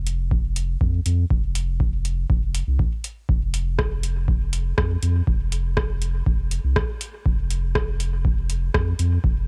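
Dub techno at 121 BPM in a straight 4/4, this short excerpt from a longer piece has a meditative, hypnotic mood. A round, sine-like sub bass sits up front from the start, moving between F1 and F2 with a fast attack and sustained notes that pump against the sidechain. A booming analog drum machine joins at 0.1 seconds with metallic hi-hats and a rim click, and an electronic kick drum arrives at 0.3 seconds, its deep analog thump placed up front. Both drum parts carry a tape-warm, small-room character from being re-recorded. The overall sound is dry and gritty, with little reverb and a cassette-tape hardware texture across the recording.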